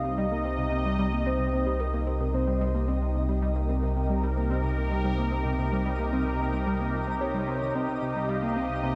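A straight, steady 4/4 pulse drives this cosmic, hypnotic ambient excerpt, anchored by a tight sequenced synth riff of detuned sawtooth and pulse waves with a plucky filter, coloured by chorus, tape echo and shimmer reverb. Beneath it, a deep, round sine sub bass holds one low note up front, while a sweeping resonant pad sustains airy, bright chords over a single unchanging harmony, its slow filter swell and noise layer giving it an evolving character. A mellow, retro pulse-width lead carries the melody with vibrato, chorus and a cassette-tape grain; it sounds in the opening seconds, drops out at 3.3 seconds and returns at 7.2 seconds, trailing through tape echo. From 1.6 seconds a very quiet granular texture adds sparkling FM twinkles with an octave-up glimmer. The mix sits in a wet spring reverb and leans heavily on echo, giving the brief passage a spacious, drifting atmosphere.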